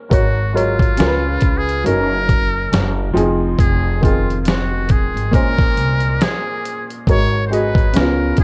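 Worn, warbling cassette tape and light small-room reverb frame this reflective, nostalgic lo-fi hip hop excerpt at 69 BPM in Bb minor with a gentle 16th-note swing, where a slightly detuned, woody upright piano and gritty, thumpy sampler-style drums sit up front, a pizzicato upright bass holds the low end, and a buzzy, breathy trumpet with metal mute carries the melody with vibrato over chords moving from Ab9sus4 through Db7, Gb6, Fm7 and Bbm9.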